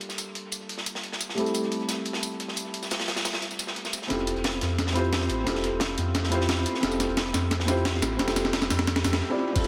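Liquid drum and bass at 176 BPM in F major, lush and dreamy, opens with a soft, felt-muted upright piano carrying tape echo and audible action noise over Gm9 and Am7, alongside a gritty, compressed sampler-style breakbeat kit with a high-tuned snare, tambourine and crash and a saturated, rolled-off second breakbeat kit with filtered hats and snare, both drenched in dub echo and studio reverb, until at 4.1 seconds a deep, sustained sine sub bass with octave and a very quiet knocking electronic kick arrive on Fmaj9 for a build-up and drum fill that stops for a brief break at 9.2 seconds in this echo-heavy excerpt from a longer piece.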